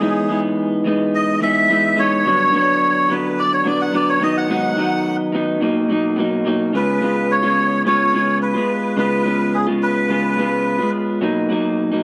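Sunny and laid-back, this indie pop cut moves at an easy 107 BPM in 4/4 with a straight feel, centred on B major. A reedy, breathy melodica carries the melody up front, coloured by ensemble chorus, plate reverb and analog delay, and its featured solo fills the opening 6.7 seconds. Beneath it, an electric guitar through a small old amp plays picked, compressed accompaniment with a slightly broken-up, lo-fi edge, dressed in subtle chorus, vibrato and plate reverb. The harmony drifts through Emaj7, Gmaj7, G#m7 and Bmaj7 before a second passage opens on C#7 and settles back on Bmaj7. The melodica drops out at 10.9 seconds, leaving the guitar to carry the final moment of this fragment of a longer piece, all within a moderate studio room.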